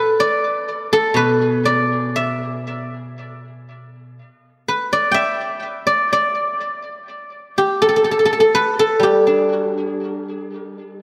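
A solo guzheng opens the recording at once and carries it alone through its full 11.0 seconds, in a pastoral, elegant Chinese traditional style. Plucked with fingerpicks, the acoustic instrument sounds silvery and ringing, sitting up front in the mix and spanning a range from A2 to G5. The pace is slow at about 61 BPM in 2/4, but the beats fall unevenly and the time bends freely in rubato, giving the line a drifting, unhurried grace in the G gong mode. A tape echo trails the guzheng's notes, and a long plate reverb of 2.7 seconds soaks the whole sound into a dreamy haze. Cut from a longer piece, the excerpt holds a single section from start to finish.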